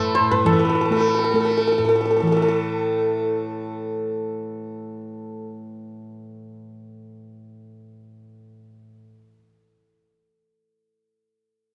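A santur and a tanpura open this short Hindustani classical fragment together, setting a meditative, introspective mood at 191 BPM in 7/4 with a straight feel, tuned slightly above standard pitch to A4 = 441 Hz. The santur carries the melody up front, its hammered strings bright and shimmering as they ring between A4 and F#5. Beneath it, the tanpura holds a softly plucked drone from A2 to A3, its buzzing tone sitting warm and up front in the mix. A low-tuned tabla adds only a brief touch just after the start, with a short ring and a small-room quality. The santur drops away at 5.4 seconds, leaving the tanpura drone to sustain alone until 9.4 seconds, all captured in a dry, close 1970s-style studio sound with light reverb.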